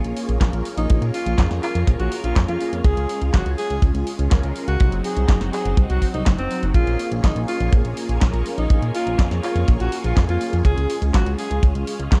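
A breathy, intimate alto saxophone carries the melody with vibrato, scooped notes and a touch of delay, entering at 0.8 seconds in this bittersweet, danceable italo disco cut in Bb minor at 123 BPM. Beneath it, an up-front chorused synth bass with tube saturation drives the groove alongside a tight, dry kick drum that enters at 0.4 seconds and a house kit of punchy snare, handclaps and bright hi-hats. A swirling, phased string machine holds sustained chords while mellow, brassy synth stabs with vibrato fill out a dark production that moves from Bbm7 to Cdim and back.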